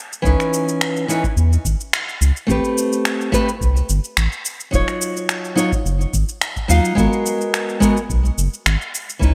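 Over a straight 4/4 pulse at 107 BPM, this wistful sunset chillout excerpt sets overdriven, layered electronic shaker and finger snaps with gated reverb up front against a deep electronic kick in the background, while a round, dark, wave-folded analog bass sustains beneath a small, fingerpicked nylon-string guitar with audible finger squeak and digital delay, moving through C#m9, Am9, D#m9 and G#m9 in a bright 1980s-style digital production with light reverb.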